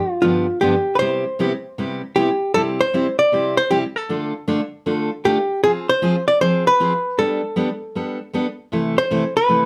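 A hollow-body jazz guitar carries the melody from the very start, its clean, dark electric tone compressed and placed up front as it moves between F4 and D5. This is a cheerful, playful country piece in C major at 156 BPM in 4/4, with a swung eighth-note feel that gives it a bouncing lilt. From 0.2 seconds a picked steel-string acoustic guitar joins as accompaniment, its full-bodied dreadnought sound also up front and ranging from G2 to A4. The harmony moves from G7 and Cmaj7 into a second section at 2.5 seconds, where it passes through C, Dm and a colorful Fm before settling on Gadd9 and C6. A moderate studio ambience gives the two guitars a touch of room around them in this short cut from a longer piece.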